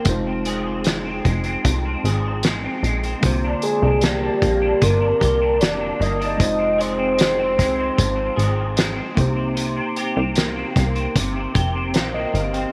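A soft, octave-layered synth lead carries the melody from 3.6 to 9.2 seconds, its round, detuned tone with a dark sub octave wrapped in lush chorus and tape echo. Underneath, this mellow, lonely slice of indie and bedroom pop moves at an unhurried 76 BPM in a straight 4/4, cut from a longer piece. A twangy, slightly broken-up electric guitar through a small old amp adds bright, lo-fi picked accompaniment colored by ensemble chorus and vibrato, while a worn, slightly out-of-tune tine electric piano sits beside it with a clean, direct sound. A plucky analog bass gives punchy, funky notes with a fast attack that then decay. The loose indie drum kit stays up front with a fat snare, a punchy kick, hi-hat and a rolled-off top, and the whole track sits in light reverb and studio ambience as the chords move from Fm7 to C9sus4, back to Fm7 and on to Cm7.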